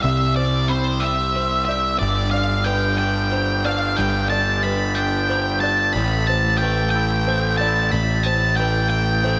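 Post-rock in a slow 6/8 at 61 BPM, this cinematic, melancholic excerpt moves from Cmaj7 through G to Am7 over 9.4 seconds. Up front, a dark octave-fuzz lead guitar carries the melody with distortion, slapback and tape echo, while a fuzz-drenched picked electric bass anchors the low end with amped overdrive. Further back, a bright, twangy electric guitar with ensemble chorus and a soft, intimate felt-muted upright piano trace arpeggios, all set in a lush hall reverb that gives the recording a big arena sound.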